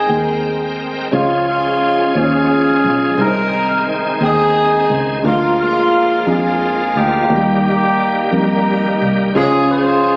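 Soulful and hopeful, this slow gospel passage in a straight 6/8 is cut from a longer piece and runs just over ten seconds. A horn section carries the melody up front, its ensemble sound distant and roomy with a jazz-style blend. Beneath it, a woody, slightly detuned upright piano sits in the background with a smooth, vintage character, while a bright tonewheel organ holds sustained chords, shouting and lightly overdriven through a slow rotary speaker and chorus vibrato. A fingered electric bass anchors the low end with a round, foam-muted, direct tone. The harmony moves from an opening Abmaj9 through Db, Ab/C, Bb7/D and Eb before settling back on Db at 9.3 seconds. The whole is heard as if captured on a phone in the room, with a scoring-stage reverb and club ambience lending a live, reverberant glow.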